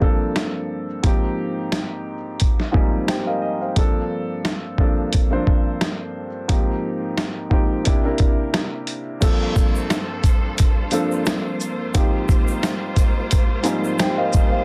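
A dense, heavily limited mix with light reverb frames this reflective yet tough boom-bap hip-hop excerpt at 88 BPM in G phrygian, where a dark, mellow concert grand piano sits up front with audible action noise and a cassette-tape tint, cycling through Gm11, Abmaj13 and C9 chords. A gritty, pitched-down sampler-style drum kit with a thumpy kick, medium-tuned snare, hi-hat, shaker and crash carries a loose 16th-note swing from the first beat. At 9.2 seconds a lush, bowed string section enters with vibrato and portamento, joined by a grainy, bright tube shaker in the background.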